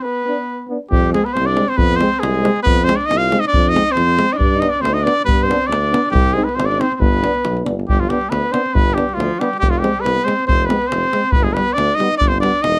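Close, detailed microphones and little reverb give this fiery, virtuosic Balkan brass band recording a dry, present sound, in a cut from a longer piece at 138 BPM in 2/4 with a straight feel, in G phrygian dominant and tuned to A4 = 436 Hz. A mellow trumpet carries the melody up front in a classical style, with a clear alto saxophone playing a second line beneath it in the background, its tone shaded by vibrato and a soft attack. A smooth-topped trombone and a distant, roomy euphonium fill in the accompaniment, and a warm tuba, touched with light vibrato and a soft attack, anchors the bass from a similarly roomy distance. The deep, acoustic davul, miked close, joins with the tuba at 0.9 seconds after a short opening break. The harmony moves through chords such as Fm, G and Cm, and a second section begins at 7.9 seconds before the cut ends at 12.8 seconds.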